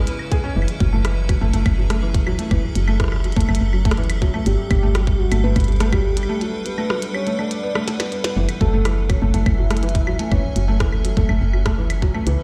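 This intricate, cerebral IDM excerpt at 123 BPM opens on an icy, crystalline glass pad holding sustained chords with chorus and its own reverb, alongside a felt-muted upright piano whose soft, mellow arpeggios carry digital delay and audible action noise. A woody, round FM bass with a fast, decaying attack sits dark and up front, while a glitchy drum kit of claves, clicky hats, rim click and a tiny snare enters at 0.1 seconds in small room ambience with digital delay. A tight, tape-warm electronic kick arrives at 0.3 seconds, also up front. At 4.5 seconds a velvety synth lead takes the melody, its smooth blend of sawtooth, triangle and square waves with a sub octave treated with chorus, tremolo and delay. The harmony moves from C#m7 to F#m7, shifts to Gmaj9 as the lead enters, and returns to F#m7 after a break from 6.4 to 8.4 seconds that closes with a drum fill. The mix sounds as if played on a big system in a bare room, with large studio reverb around it.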